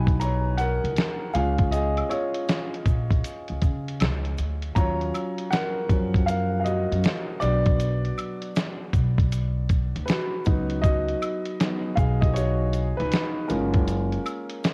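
An intimate upright piano with audible action noise, long sustain and a vintage cassette-tape grain opens this mellow, cosy lo-fi hip hop excerpt alongside a dark, woody pizzicato upright bass on gut strings, joined at 0.1 seconds by a gritty, compressed soul sampler-style drum kit with a thumpy kick and medium-tuned snare, also tape-coloured, while a tube shaker and woodblock sit softly in the background of the swung groove as the piano solos over suspended chords, a rootless A#m7 and darker minor harmonies before settling on F#maj9 at 13.5 seconds, wrapped in light reverb and small room ambience.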